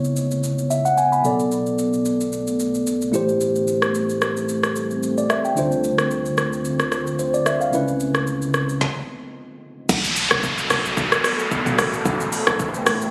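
Swung sixteenths drive this late-night, deep amapiano excerpt in 4/4, with an up-front electronic drum kit of deep kick, woody snare, metallic hats, rim click, shaker, toms and crash running throughout. A mellow, clean tine electric piano with a low-pass filter carries the chords over a round, amped fingered electric bass, while a moody, detuned sawtooth pad with chorus, slow attack and long release sits dark in the background. After a stop at 8.8 seconds, the drop at 9.9 seconds brings in a percussive, fast-attack, decaying FM log drum bass and an up-front downlifter, all heard through a phone in the room with club reverb.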